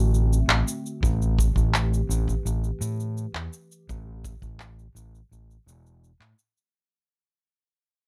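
A warbling, lo-fi pad with slow-attack square and triangle tones, chorus and its own reverb holds dark, nostalgic chords over an overdriven fingered electric bass that sits punchy and up front, moving from D7 to Am7 in A dorian at 84 BPM in a straight 4/4. Tape-toned electronic shaker and handclaps join at 0.1 s, and an acoustic kick with a rolled-off top and a pumping small-room ambience plays from 1.0 to 4.6 s. This autumnal, delicate folktronica fragment, cut from a longer piece and kept fairly dry overall, fades out across its full 6.7 seconds.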